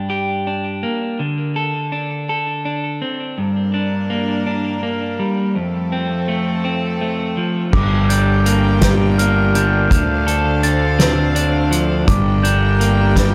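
In a slow, straight 6/8 at 55 BPM, this cathartic, cinematic post-rock passage in G minor opens with a slightly broken-up electric guitar picking arpeggios through spring reverb and digital delay, joined at 3.4 seconds by a close chamber string section holding clear, reedy, gut-toned bowed chords. At 7.7 seconds the piece moves into fuller territory as a growly fuzz bass, a soft-mallet drum kit with a fat snare and punchy kick, and a mellow, bell-like glockenspiel arpeggio with its own delay arrive together. Chords move from Gm through F and Dm7 in a lightly reverberant small room, and the piece is cut from a longer work.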